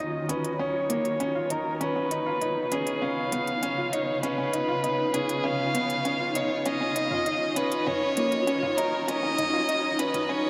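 Piano and strings electronica in Eb minor at 99 BPM, this cinematic, hypnotic excerpt from a longer piece builds throughout its 10.5 seconds, with a filter sweep on the up-front, vibrato-laden solo violin melody over a riff from an intimate, woody upright piano carrying shimmer reverb and analog delay. A blurred, detuned granular pad sustains Ebm7 and Db7 chords beneath, while an overdriven electronic kit with crisp hats and toms enters at 0.3 seconds. The dreamy mix is soaked in huge ambient reverb with an 8.2-second decay.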